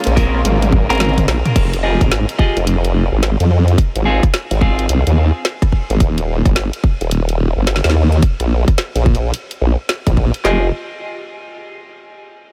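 Funky and playful, this glitch hop excerpt struts along at 108 BPM in F minor with a swung sixteenth-note feel. It opens on a drop, where a very quiet, lush string section bows soft, vibrato-rich sustained chords for the first 1.5 seconds while a drum fill runs from 0.4 to 1.6 seconds. Two layered electronic drum kits drive the groove. The louder one pairs a kick with handclaps, a woody snare and bright hats, while the other, mixed up front with a tight kick and its own woody snare, adds hi-hats, rim clicks, toms and crash cymbal. A formant-sweep wobble bass dominates the low end with a saturated, detuned sawtooth growl, thickened by chorus and tube saturation. A dark, clean picked electric guitar plays sidechain-pumped stabs through 4.9 seconds, trailing a diffuse ambient delay, then returns briefly at 10.4 seconds as the harmony comes back to Fm9. Light reverb and digital ambience give the mix a subtle sheen.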